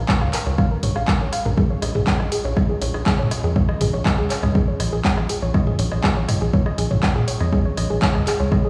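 Dramatic and hypnotic, this short cut from a longer melodic techno track moves in a straight 4/4 over a Bbm chord that shifts to Dbadd9/Bb at 1.6 seconds. A punchy electronic kick and an analog drum machine with handclaps, hi-hat, rim click and toms sit up front, both re-recorded in a large room, entering at 0.1 seconds. Underneath, a tight, driving sequencer bass built from sawtooth and square waves plucks through a moving notch filter, pumping against the kick. A woody, wave-folded pluck plays mellow arpeggios with a noise layer, chorus and dub echo while a filter sweep runs across it for the whole cut. Deep in the background, a dark, warbling tape-like pad with a lo-fi, nostalgic cast fades in through chorus and its own reverb, and the whole mix carries the boom of a big sound system in a bare stone room.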